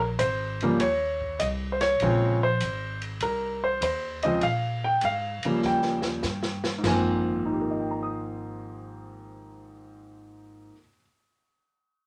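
Swinging 8ths at 99 BPM in 4/4 drive this playful jazz piano trio fragment in Ab major, where an up-front, natural-sounding baby grand piano with short sustain carries the melody over a woody pizzicato upright bass and an open acoustic drum kit with dark cymbals, a medium-tuned snare and a boomy kick, whose fill from 5.6 s leads into an Ab69 chord at 6.8 s before the drums stop at 7.0 s, heard in a moderate studio ambience.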